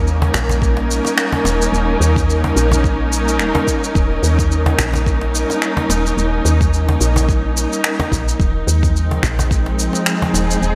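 A lightly swung 16th-note groove at 108 BPM in 4/4 carries this peaceful organic downtempo piece in Eb mixolydian, where a deep, layered electronic kick, produced electronic shaker and finger snaps, and a hard-handed acoustic cajon with faint snares sit beneath a round, woody FM bass and an up-front, dark chamber string ensemble whose bowed, vibrato-rich chords breathe with sidechain pumping, set in a lush 2.4-second hall reverb with bright 1980s-style digital sheen as the harmony shifts from Eb7 to Fm7/Eb at 8.4 seconds.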